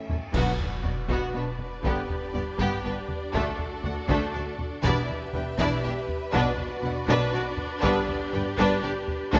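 This is a cinematic, epic orchestral film-score passage in a relentless 3/4, cut from a longer piece. A focused, vibrato-rich violin section carries the melody over a second violin line, viola accompaniment and a full string section holding sustained chords, all bowed and lush, while cellos and woody double basses anchor the bass. Clear trombones and a very quiet, dark French horn section hold sustained chords behind the strings, and a taiko ensemble played with heavy sticks pounds through the whole passage. A brief drum fill opens the music, and clash cymbals with a concert bass drum strike a bright, dry accent from 0.3 to 1.3 seconds as the band lands together. The harmony moves through B minor, G, D and E minor seventh before returning to B minor and G, and a moderate scoring-stage reverb gives the ensemble a sense of space.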